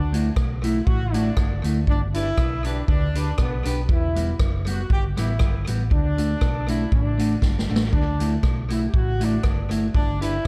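An up-front swinging big-band drum kit drives this joyful, bouncy ska piece, its punchy kick, medium-tuned snare, rim clicks and hi-hat sounding natural in a big room, with a drum fill from 7.4 to 7.9 seconds leading into a repeat of the opening section. The tempo sits at 119 BPM in 4/4 with a light swing on the eighth notes, and the music is in D major, moving through Dadd9, G, Emadd9 and D. A hollow-body short-scale electric bass, fingered and amped, holds the low end with a round, dark tone. A clean, picked electric guitar adds twangy accompaniment with tape echo. A tight horn section carries the melody with a clear, smooth-topped pop-style sound, also touched with tape echo. Light reverb frames a warm production in this passage, cut from a longer piece.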